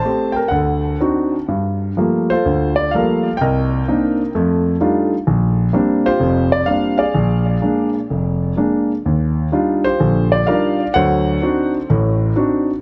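Swung eighths in 4/4, loosened by rubato, carry this cool, moody solo jazz fragment cut from a longer piece: an intimate, up-front concert grand piano with deep bass and audible action noise opens on Am7 and D7b9, then from 1.5 seconds moves through Gm9, Cm9, F13, Bb69 and Ebmaj9 before returning to D7b9, set in moderate studio reverb with a dark production.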